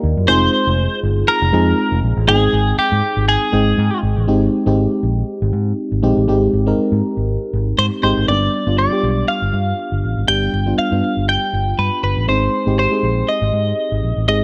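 A mellow FM electric piano with a soft, warbling chorus and a dark, full-bodied tone opens this 1980s-style pop cut alongside a round, punchy fingered electric bass, both sitting up front from the start. At 120 BPM in 4/4 with a light 16th-note swing, the mood is dramatic and nostalgic, moving from Fm7 to Abmaj7 before shifting to G and then Ab in the later part. A bright, clean twelve-string electric guitar carries the melody with picked, compressed notes touched by delay, entering at 0.3 seconds, dropping out around 4.0 seconds, and returning at 7.8 seconds. The electric piano's vintage FM character, with its fast attack, decaying notes and noise layer, contrasts with the guitar's bright clarity. Light reverb surrounds the parts, and the recording is a short portion cut from a longer piece.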